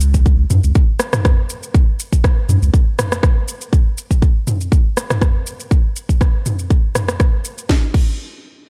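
Driving and earthy, this short afro house excerpt moves at 121 BPM in 4/4 with a light swing on the sixteenths. A deep, round sine sub bass sits up front with a fast attack and sustained tone, moving between C#2 and F#2 with sidechain pumping before it drops out at 2.7 seconds. The punchy electronic kick enters at 0.1 seconds and stays prominent, layered and tape-warm with the character of being re-recorded in a small room. Behind it, a house drum kit sits lower in the mix, adding a cracking snare, rim clicks, shaker, toms and crash cymbal with the same layered, small-room colour. The whole passage is dry, with little reverb, keeping the groove tight and close.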